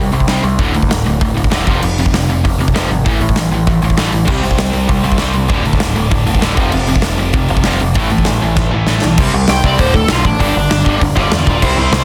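Punk rock at 196 BPM in 4/4 with a straight feel, this short cut from a longer piece is upbeat and rebellious, built on power chords moving through C5, D5, F5 and A5. A tight, bright distorted guitar and a further distorted electric guitar pick the riff from the start, sitting in the background beneath a growling, overdriven picked bass that is both direct and amped. A big acoustic rock kit sits up front in a large room, its punchy kick, medium-tuned snare, hi-hat and crash driving the pulse. A third, double-tracked distorted guitar thickens the riff from 4.3 to 9.2 seconds, and a drum fill at 8.6 seconds leads into a new section. From 9.5 seconds a smooth overdriven lead guitar with delay takes a solo up front over C5, D5 and G5. The mix is dry and dense, with a heavily limited modern master.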